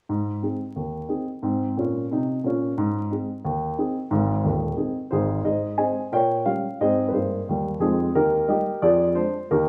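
A dark upright piano opens the recording at 0.1 s, playing alone in a swinging, exuberant stride jazz style at a brisk 179 BPM in 4/4. The eighth notes carry a light swing, and the piece sits in Ab major, with harmony that moves through Db and diminished chords before settling back on Ab. The piano covers a broad range from a deep Eb1 up to Ab5, and its woody, mellow tone has a short sustain that keeps each note crisp and close. Around 5.5 s the music moves into a new passage that turns toward Eb near its close, and the fragment, cut from a longer piece, ends at 9.7 s. The piano sits up front in a large studio with moderate reverb, recorded live in one room, and a layer of vinyl crackle gives the sound an aged, intimate feel.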